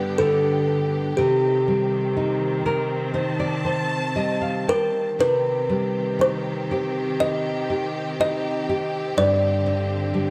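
A gentle, wistful children's lullaby, this short passage from a longer piece drifts at 61 BPM in 4/4 with a loose, rubato feel. A kalimba carries the melody with a woody, hollow-box thumb pluck that rings out with an airy, warm glow. Beneath it, an up-front nylon-string guitar plays fingerpicked accompaniment with a full-bodied, deep classical tone and fresh strings, adding a fill from 2.1 to 5.2 s. A quieter symphonic string section holds lush, bowed chords, its clear, focused ensemble tone showing vibrato and a biting edge. The harmony moves from G to C minor in a C dorian colour, turns to C harmonic minor at 5.2 s and closes on Gsus4 at 9.2 s, all heard through a moderate spring reverb, small-room ambience and cassette-tape character.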